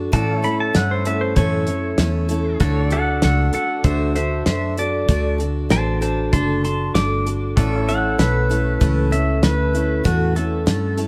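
Heard from further back in a lightly reverberant room, this brief cut from a longer honky-tonk and classic country piece has a down-home, nostalgic feel in a straight 4/4. Up front, a twangy, compressed pedal steel carries the solo melody with fingerpicks, slide and volume swells, while a second pedal steel holds sustained chords in the background. A full-bodied picked dreadnought acoustic, a dark, round, foam-muted vintage bass and a dry 70s kit with a fat snare, tight kick and rolled-off top support the harmony as it moves from A to D and back to A at 7.6 seconds.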